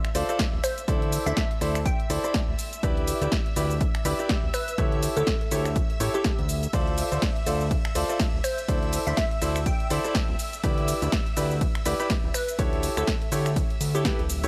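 A dry, punchy mix opens this energetic, bittersweet piano house cut, taken from a longer piece, at 123 BPM with a swung 16th feel, where a brilliant, up-front concert grand piano riff with tape echo and a fat, saturated analog bass pump against a tape-warm electronic kick and a layered house kit of finger snaps, hi-hat, ride, shaker and snare, while shimmering vintage string-machine violins hold sustained chords and a glassy, crystalline wavetable pluck carries the melody over a cycle of Dm7, C69/D, Em7/D and A7/D.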